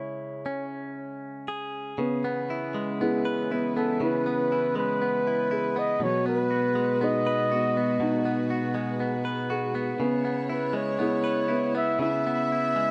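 A straight, unhurried 4/4 pulse carries this melancholic, intimate acoustic folk-pop ballad, heard as a short cut from a longer piece. From the start, a breathy flugelhorn sings the melody up front with a soft, whispered attack and gentle vibrato, beside a bright, twangy clean electric guitar, picked and compressed, that provides the accompaniment. At 2.0 seconds a felt-muted upright piano joins with soft, mellow arpeggios, while a chamber string section enters with bowed, sustained chords played sul tasto with light vibrato, sitting quietest and close in the blend. The harmony settles on a minor seventh chord and shifts at 6.0 seconds before returning at 10.0 seconds. The dry, dark production keeps the ensemble near and hushed.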